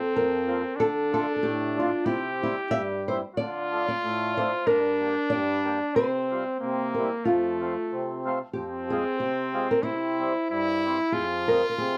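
Bouncy and festive, this alpine folk dance-band excerpt swings lightly in two, with a small, thumb-plucked nylon-string guitar carrying the melody while an up-front classical-style trumpet with a clear, smooth top and a slapback echo sings the second line. A reedy, full accordion joins at 0.2 s with boxy accompaniment, and the moderate reverb and dark production give the whole a cozy glow before the harmony turns toward minor at 8.6 s, a darker passage that runs on until the cut at 12.0 s.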